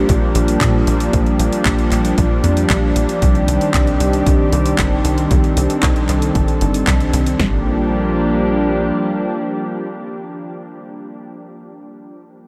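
A playful, sunny italo disco fragment, built on a mellow, detuned analog pad with subtle chorus that holds sustained Bb6 and Cmadd9 chords over a tight, punchy sequencer bass with a plucky sawtooth bite. A layered electronic house kit supplies a punchy kick and snare, along with softer handclaps and tape-toned hi-hats. The drums drop out by 7.5 s and the bass at 8.9 s, leaving the vintage, warbling pad alone in a dreamy mix soaked in huge ambient reverb.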